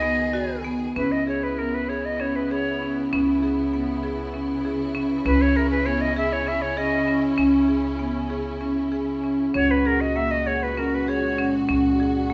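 Restless and hypnotic, this contemporary chamber piece moves in an uneven 7/8 at 196 BPM in eighths, with a straight feel centred on C# dorian, and it is cut from a longer work. A bright, reedy jazz flute carries the melody up front, its airy tone touched with vibrato and a soft attack, until it stops at 11.5 seconds. Beneath it, a close-miked marimba played with hard mallets spells out woody, percussive arpeggios, the most prominent of the accompanying parts. A lush, bowed string section holds smooth, even chords with vibrato, while a pizzicato upright bass anchors everything on a low C#. The harmony drifts from B over C# to C#m7 and then to F#add9 over C# at 9.5 seconds, all set in the wet bloom of a recital hall.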